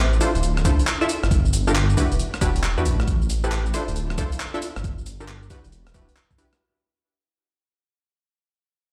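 A rumbling, saturated detuned saw bass sits up front from the first moment in this moody, soulful two-step UK garage excerpt with a swung sixteenth-note feel. Punchy sawtooth chord stabs, thickened with chorus and tape echo, cycle through Dm9, Gm9, Em9 and Am9. Beneath them, a gritty, compressed breakbeat kit of handclaps, hi-hat, rim click and shaker is soon joined by an overdriven, knocking electronic kick, all set in a moderate digital reverb that suggests a big sound system in a bare room, and the whole thing fades out from 1.9 seconds to the end at 6.6 seconds.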